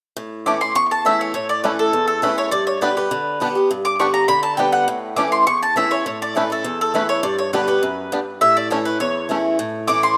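A bluegrass excerpt in A mixolydian, this short, lively and rustic passage runs at a brisk 204 BPM in a straight 4/4. A picked, swing-style acoustic guitar opens the accompaniment at 0.2 seconds, its bright, boxy tone sitting up front as it moves between A and G chords. The mandolin carries the melody in a high register from 0.5 seconds, its woody double strings given a slapback echo, and it is the loudest, most forward voice. Alongside it, a bluegrass banjo played with fingerpicks adds a mellow, twangy and percussive melodic line in a lower range until 9.4 seconds. Light studio reverb surrounds the trio in a rough home demo mix, and the passage feels lifted from a longer piece.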